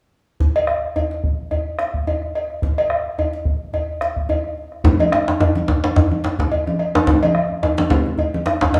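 A medium-tuned djembe played with hard hands stands out once it enters at 4.8 s, sitting up front with a vintage, band-limited bite that makes it the loudest voice in this West African drum ensemble. The fragment, cut from a longer piece, moves at 108 BPM in 4/4 with a light swing on the sixteenths, and its mood is driving and festive. From 0.4 s a round bombo and a deep, warm first djembe set the groove, joined at 0.6 s by an up-front, metallic cowbell. Low-tuned congas arrive alongside the second djembe, ringing under soft hands with a compressed, saturated edge. The players share one room, and its small-room ambience mixes with a lush large-studio reverb that gives the drums a live, roomy sound.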